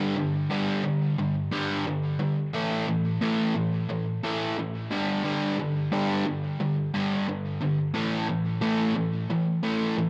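Rock with a swaggering, sunny mood, this ten-second excerpt features a dark, picked, double-tracked overdriven electric guitar playing alone up front in a low register, moving between G5 and A5 power chords with spring reverb and tape echo, captured in a dry, close 1970s-style studio sound with light reverb.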